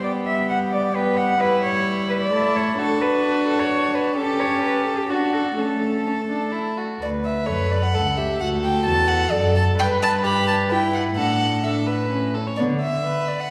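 A rich, up-front period-style cello carries the bass beneath a close, nasal first violin melody, a second violin line with light vibrato and a dark, nasal viola accompaniment, each part bowed by a single player with a reedy gut-string tone, in this lively, cheerful classical-period string quartet movement in D major at a quick 130 BPM in 3/4, cut from a longer piece and heard from further back in the room in a wet scoring-stage reverb with lossy compression artefacts.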